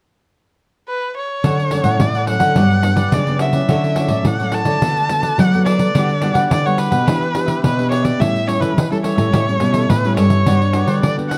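A straight 4/4 samba-choro groove at 106 BPM drives this festive, sunny fragment in D major, carried by a jingly, close pandeiro struck with hard hands. A rich erhu plays the melody, entering alone at 0.9 s and sitting up front with smooth, even bowing, vibrato and portamento from a single player. At 1.4 s the rest of the ensemble arrives: a crisp, picked cavaquinho and a thumb-plucked classical nylon-string guitar share the accompaniment. A second nylon-string guitar holds the bass from the background, dark and full-bodied, with audible finger squeak. The harmony moves through Dmaj7, Gmaj7 and Em7 to A7 before reaching Gmaj7 at 10.5 s. The production has a dark, warm character, with moderate studio reverb lending the acoustic instruments a modest sense of room.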